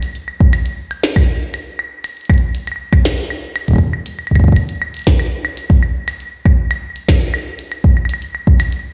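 Heard as if through a big sound system in a bare stone room, this melancholic, glitchy IDM fragment at 119 BPM in straight 4/4 pairs a soft, up-front electronic kick drum, entering at 0.4 seconds, with a tape-warm glitchy kit of claves, clicky hi-hats and a tiny snare, its parts trailed by studio reverb and delay.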